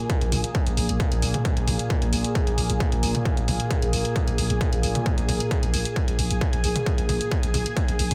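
A dry cut from a longer piece of dark, driving peak-time techno in straight 4/4, where a distorted, layered electronic kick sits up front over a growling, buzzy 808-style bass with tube saturation and a low-pass filter, while a punchy analog drum machine's hi-hats and toms, re-recorded in a large room, pump with sidechain alongside an evolving, detuned, wave-folded analog drone and an ethereal, airy pad washed in ensemble chorus, phaser and reverb.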